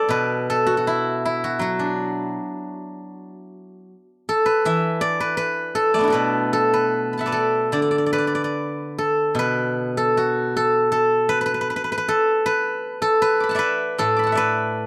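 Elegant and pastoral, this short excerpt from a longer piece of Chinese traditional music features a solo steel-string zither in D gong mode, moving freely in rubato around 72-82 BPM in 2/4. Played with fingerpicks, the zither rings out silvery and up front, spanning a broad range from low to high as the music shifts into a new section at 9.4 seconds. The recording is dry and close, with the intimate character of a 1970s-style studio session.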